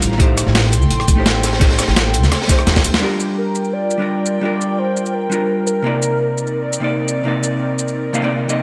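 Melancholic and rolling, this short cut from a longer liquid drum and bass track moves at 170 BPM in G minor, drifting from Am7b5 to Gm7 and then Cm9. A dark, clean hollow-body jazz guitar picks accompaniment up front with a touch of delay, while an airy, breathy pad with a warbling, detuned vintage character holds sustained chords under a shimmer of chorus. For the opening 3.0 seconds a woody upright bass plucks gut strings with a thumpy tone, joined by a compressed, gritty electronic kick and a second, darker breakbeat kit with saturated, rolled-off hats and a high-tuned snare tucked in the background. A sampler-style breakbeat kit of hi-hat, rim click, shaker and medium-tuned snare carries on up front throughout, and a drum fill with a band accent marks the change at 3.0 seconds. From there a velvety synth lead with vibrato, chorus and delay sings the melody until 7.0 seconds, all set in a lush hall reverb with a hint of small room ambience.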